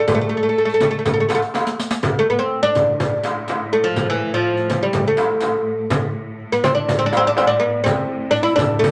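Arabic maqam ensemble music in maqam bayati on A, moving at 123 BPM in a straight 4/4 with a longing, hypnotic mood, cut from a longer piece. A woody, fretless oud with double strings carries the melody up front, plectrum-plucked, while a rich, expressive violin with vibrato and portamento plays a soft-attacked second line in the background until 1.5 s. A crisp metal-shell darbuka sounding distant in a large room, a small bright frame drum and a close, dry riq with bright jingles keep the percussion going, with a drum fill just before a lush, focused cello section enters at 2.0 s to hold a low A drone beneath it all in moderate studio reverb.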